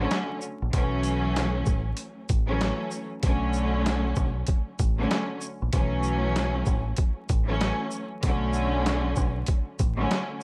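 Boom-bap hip hop with a dark, moody cast, this short cut from a longer piece sets a bowed string section, smooth-topped and expressive with vibrato and portamento, over a cassette-tape haze, its chords moving between Bm7 and A69. A deep, round fingered electric bass sits underneath from the start, while a compressed, pitched-down sampler-style drum kit enters at 0.1 seconds, gritty and overdriven, with a thumpy kick, high-tuned snare, hi-hat and shaker pushed up front. The swung sixteenths and dry, crackling vinyl surface give the loop its dusty character.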